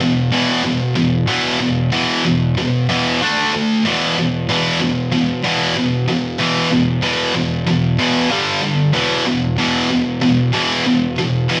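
A straight 4/4 pulse at 94 BPM drives this relentless, aggressive metal passage in E minor, cut from a longer piece. A heavy high-gain electric guitar, bright, picked and double-tracked with distortion, sits up front and carries the solo role for the full 11.6 seconds, moving between E5, D5 and G5 power chords. The sound is that of a band playing live in one room, with a moderate studio reverb around it.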